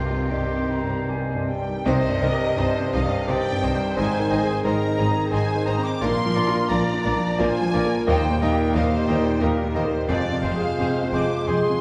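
A wet recital-hall reverb of about 1.5 seconds surrounds this brief passage, cut from a longer romantic movement for piano and orchestra in C minor. The mood is passionate and brooding, at 87 BPM in a rubato 3/4. Up front, a clear concert grand piano carries the melody with deep bass and long sustain, joined by a lush, bowed violin section with smooth vibrato. Second lines come from a very quiet, focused violin section, a pure metal-toned flute with a soft attack, and a distant oboe, the flute and oboe set in the background. A mellow bassoon and a close, even viola section fill out the accompaniment, while cellos with expressive portamento and double basses with a smooth top hold the bass. A very quiet, roomy French horn section enters at 1.8 seconds with sustained chords, and the harmony moves from Cm through Ab, Bb and Eb to Fm at 10.1 seconds.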